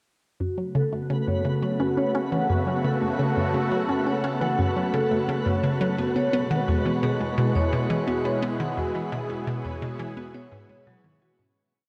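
A hollow, bouncy square-wave pluck cycles a detuned 12-step loop that drifts against the bar in this hypnotic, expansive piece of ambient, sequencer-driven space music at 86 BPM in F# minor, alongside soft-mallet vibraphone arpeggios with slow motor vibrato, a filter sweep and analog delay, a bright, airy sawtooth pad holding chords that move from F#m to E at 6.0 s, and a twinkling granular texture that enters at 0.8 s, set in a long shimmer reverb before a fade-out from 7.8 s.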